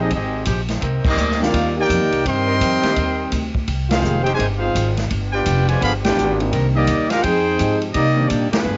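A clear, tight trumpet section with vibrato carries the melody from the first moment over a trombone section's second line, a grand piano comping in the background and a woody, thumpy upright bass, in a dramatic, brassy C minor big band swing excerpt at 168 BPM. A second, mellow trombone section adds sustained chords behind them while a swinging drum kit with a punchy kick drives the band through sharp accents, and the piano drops out at 4.2 seconds before returning at 6.4 seconds over chords moving from Fm9 and Cm9 through Abmaj7 and G7b9. The brass and piano carry a cassette-tape coloring, and the whole home cassette recording sits in light reverb with a dull, rolled-off top.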